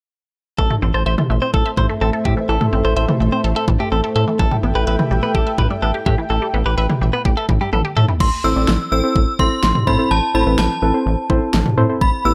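A moderate studio ambience gives this melancholic, nocturnal synth-pop excerpt a close, polished sound. From 0.6 s an overdriven, layered, electronic pop drum kit with a knocking kick and fat snare sits beneath a rubbery, bouncy square bass that stays up front. Over them, a dark, shimmering pulse-width pad holds sustained chords, a juicy, squelchy blip pluck spins bright arpeggios through phaser, delay and plate reverb, and a clean, direct-recorded electric guitar adds a compressed, picked second line with its own delay and reverb. A drum fill at 7.7 s leads into a new section at 8.2 s, where the pad, blip pluck and guitar drop away. In their place, an inharmonic, ringing FM chime carries the melody high above the bass and drums, joined by a lo-fi, warbling, nasal pluck playing detuned accompaniment.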